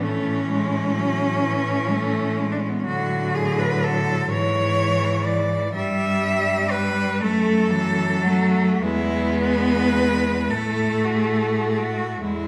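A slow, flexible 6/8 pulse breathes under this lyrical classical passage for cello ensemble, moving at roughly 32-43 BPM in dotted quarters with a rubato feel and a serene, warm mood. Four bowed cellos, each a single player with vibrato, sound together from 0.0 to 12.5 seconds: the melody cello sits up front and sings from B3 to E5, with a rich, focused tone, while a second line and an accompaniment cello, the latter with a smooth top, fill the middle register. Beneath them, the bass cello holds the low end from E2 to A2 with an even, smooth sound. The harmony opens on A and passes through a rootless Bm7/A, E/G#, G6, F#m7 and E before settling on F#madd9/A at 10.5 seconds. A recital hall reverb with a 1.8-second decay surrounds the ensemble, and the passage is cut from a longer piece.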